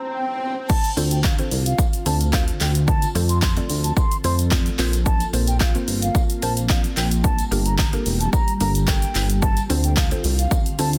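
A punchy analog drum machine drives this confident, energetic dance-pop excerpt at 110 BPM in D minor, its kick, handclaps, hi-hat, shaker and crash cymbal sitting up front with the character of a small room. A brief electronic swell opens the clip before the drop lands at 0.7 seconds. A dark, glossy chorused synth bass, built from pulse and sawtooth waves, enters at 1.0 seconds with sidechain pumping. Over a woody, round, mallet-like synth pluck colored by chorus and phaser, an airy, hollow concert flute carries the tongued, vibrato-laced melody through tape echo. A glassy, ethereal FM pad sustains chords in the background, and a very quiet, jingly tambourine adds shimmer. The harmony moves through Gmadd9, Dm7, F and Bbsus2 inside digital ambience, with a dense, heavily limited modern master.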